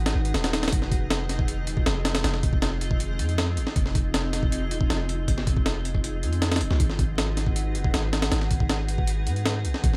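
Drum and bass in a raw, frenetic jungle vein, this short excerpt pairs an up-front, compressed breakbeat kit, pitched up and gritty with a thumpy kick, a high-tuned snare and hi-hat, against a deep, mellow, sine-like 808-style bass that sustains long tones with a fast attack, all in a dry room dusted with vinyl crackle.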